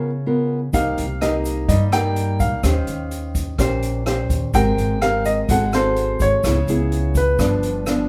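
Bossa nova at 126 BPM in Ab major, romantic and sophisticated, this cut from a longer piece opens with a thumb-plucked, classical nylon-string guitar sitting up front before a baby grand piano with a warm, natural tone takes the high melody at 0.7 seconds. Joining at the same moment are a woody, growly pizzicato upright bass, an open jazz kit of hi-hat, rim click and boomy kick in a small-room sound, and a grainy, very quiet tube shaker. The band plays live together in one room under light reverb, moving through rich changes such as Cm7, Eb13, Abmaj9 and Ab7b9 before landing on G7 at 7.4 seconds.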